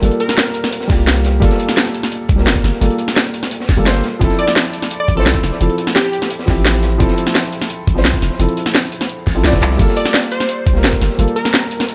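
Lush and dreamy, this liquid drum and bass excerpt rides a dark, intimate baby grand piano with tape echo over Gm9 and Fmaj7 chords, a deep sine 808-style bass, an up-front layered electronic kit with a cracking snare and bright hats, a saturated breakbeat kit with its top rolled off sitting in the background, a gritty pitched-up kick arriving at 0.9 seconds, and a punchy detuned sawtooth unison lead with subtle chorus and delay flashing in at intervals across the excerpt, with a drum fill at 9.6 seconds.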